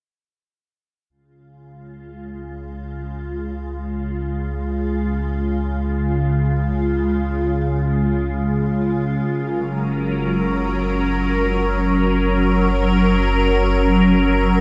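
A huge, wet ambient reverb with a decay of 7.8 seconds bathes this short passage of luminous, expansive space music, which drifts in free time and is cut from a longer piece. A deep, round sub bass enters first at 1.1 seconds, its mellow sine tone sustaining low beneath the music as it fades in. At 1.9 seconds an evolving wavetable pad joins with slow-attack sustained chords, a bright, up-front, morphing blend of detuned unison sine and triangle tones with a ring-modulated edge. The pad also carries its own ensemble chorus, built-in reverb and phaser. Both parts fade in together across the passage, resting on C# before the harmony moves to F# at 9.2 seconds.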